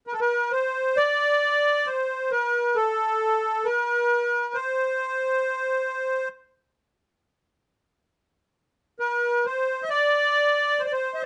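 A reedy, sweet accordion with light tremolo tuning plays alone and up front from 0.1 to 11.3 seconds in this passionate, festive Arabic excerpt in a straight 10/8, its dark, smooth tone set in light reverb with a top end that stops at 10.9 kHz.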